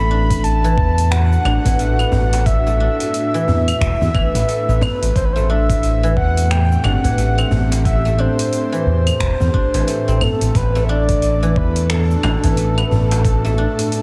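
This meditative organic downtempo excerpt opens with a soft, breathy, flute-like synth lead carrying the melody, over silvery guzheng arpeggios plucked with fingerpicks and a smooth, gliding synth bass sitting up front. An airy, ethereal pad with a slow attack settles into the background at 0.2 s, its sustained chords pumping under sidechain. A gritty, thumpy electronic kick arrives at 0.3 s alongside an overdriven deep house kit of cabasa, claves, finger snaps and metallic hats, re-recorded in a large room. From 1.1 s a deep, distant djembe with metal rattles joins further back. The groove moves at 89 BPM in 4/4 with swung sixteenths, the harmony shifting between Bm7/A and Am7. Light reverb and digital ambience surround the mix, which is heavily compressed into a radio-like sound.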